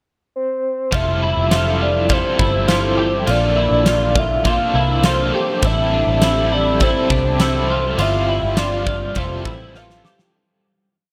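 A soft, octave-layered synth lead opens alone with a chorused, tremolo-laced motif before a pumping arena drum kit with bright cymbals and a fat snare, a round foam-muted bass, a swirling phased pad, an overdriven semi-hollow guitar strumming open chords and a warm, clean twelve-string ostinato join at 0.9 seconds in this dreamy, floating dream pop piece that climaxes over Fmaj9 and Bbmaj9 harmony, fades from 8.0 seconds and closes on a drum fill.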